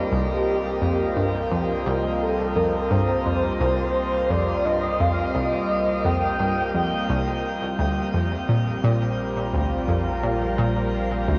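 A smooth, vibrato-laden synth lead carries the melody over an evolving, morphing wavetable pad from the opening, while a round analog bass fades in beneath them and a bright, detuned analog pluck plays a riff with chorus and delay starting at 0.1 seconds, in this expansive, luminous stretch of ambient, sequencer-driven space music at 86 BPM in 4/4. The harmony moves from C minor to B-flat at 7.8 seconds, shortly after the lead stops at 7.4 seconds, leaving the phaser-treated pad, the deep bass and the pluck to continue. A wet shimmer reverb and the warbling pitch drift of worn cassette tape give the whole passage a hazy, vintage glow.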